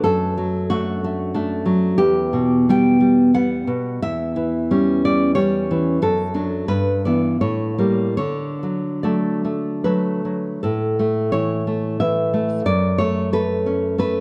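Close, detailed microphones capture a solo nylon-string guitar up front in a moderate concert-hall reverb, giving this short fragment of a longer romantic classical piece an intimate yet spacious sound. The fingerpicked guitar has a dark acoustic tone and moves in a flexible, rubato triple metre, its tender, nostalgic phrases spanning E2 to G5. After an opening passage that settles onto a D chord, a new section begins at 10.6 s and moves from A to F#m before the recording breaks off at 14.2 s.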